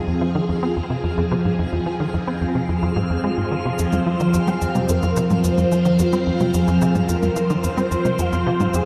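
A swirling, vintage phased string machine holds sustained F minor chords under a twinkling granular texture that fades in, while a tight, nasal sequencer bass riff with a filter sweep drives this hypnotic, mysterious stretch of ambient space music at 109 BPM. At 3.8 seconds a smooth, warbling portamento lead with vibrato enters alongside tape-warm electronic shaker and toms. Wet concert hall reverb surrounds the dark, warm excerpt, which is cut from a longer piece.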